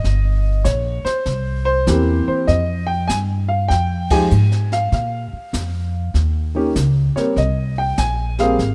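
Jazz piano trio in a playful mood, swinging at 98 BPM in 4/4 through a short passage cut from a longer piece, with a worn, vintage-sounding grand piano carrying the melody up front over a woody, thumpy pizzicato upright bass on gut strings. A brushed drum kit sits lower in the mix with dark cymbals, a high-tuned snare, a boomy kick, hi-hat and ride, and the whole band hits a shared accent at 4.0 seconds. The harmony moves from Gdim through C7 and Fm9 toward Eb7 and a closing Abmaj9, all heard in a small room with the rough feel of a home demo.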